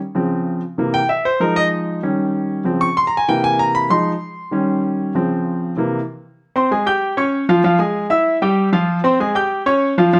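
A clear baby grand piano opens this short cut from a longer Latin piece, playing alone from 0.1 seconds and sitting up front in the sound. The mood is danceable and driving, set at a brisk 192 BPM in a straight 4/4 feel and pitched in F minor, tuned slightly low to A4 = 438 Hz. Across its range from C3 to G6, the piano has a polished, present tone, framed by a moderate studio reverb that lends it a sense of room. For the first 6.4 seconds it cycles through a repeating progression of Dbmaj7, C7, Fm7 and Eb7. From there the harmony shifts to Abmaj7, Db and Fmmaj7, then settles through Fsus2 and Fm before closing on Db at 9.5 seconds.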